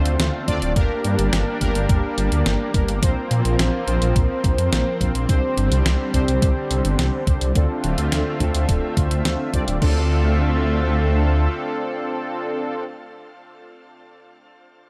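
A lush, warbling unison pad with vintage 12-bit grit and sidechain pumping opens this nocturnal, driving synthwave excerpt alongside bold, nasal analog synth brass stabs that carry a filter sweep, chorus, digital delay and shimmer reverb, while a dark, detuned saw bass rumbles up front. A clean 12-bit drum machine with a fat snare, hi-hat and crash joins at 0.1 seconds, and a thumpy, tape-tinged electronic kick follows at 0.5 seconds, both driving the Dm7, Gm, Bbsus2 and Csus2 changes. The drums drop out at 9.9 seconds, leaving the saturated bass, shimmering pad and brass to carry the closing stretch in a lightly reverberant space.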